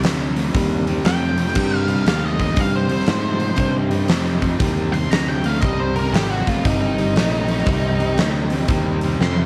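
A heavy, brooding blues rock and southern rock power-trio excerpt in a swung 4/4, where a crunchy, double-tracked overdriven guitar riff sits up front with a huge arena drum kit of fat snare, punchy kick and bright cymbals in a pumping hall room, joined by a growling, punchy fingered electric bass, while from 1.1 seconds an octave-fuzz lead guitar solos with distortion and slapback echo over a very quiet, gritty tonewheel organ holding sustained chords through a slow rotary speaker, all on a C minor chord in light studio reverb, before a drum fill at 9.2 seconds.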